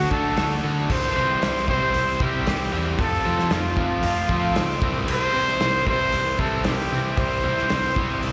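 A breathy, intimate trumpet with light vibrato carries the wistful, carefree melody up front in this 115 BPM indie rock excerpt in C major, over a bright, crunchy overdriven guitar riff with spring reverb and slapback echo, a second overdriven guitar sitting in the background with analog chorus, a punchy fuzz bass, and a loose indie drum kit with a tight kick and rolled-off top, all heard as a live gig through the venue's PA with recital hall reverb as the chords move from D to C, F and back to C.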